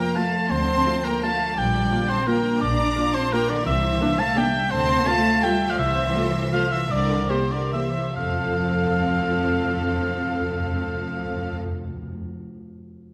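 A wet scoring-stage reverb surrounds this festive, elegant classical excerpt in F major and 3/4, moving with rubato between 128 and 185 BPM and slowing from 5.2 to 8.2 seconds, as a lush bowed violin section carries the melody over a second violin line and an up-front cor anglais, with ringing harp arpeggios, mellow French horn chords and a rich viola section in the background, a distant, expressive cello section and focused double basses on the bass, and dry, articulate hard-mallet timpani entering at 3.7 seconds.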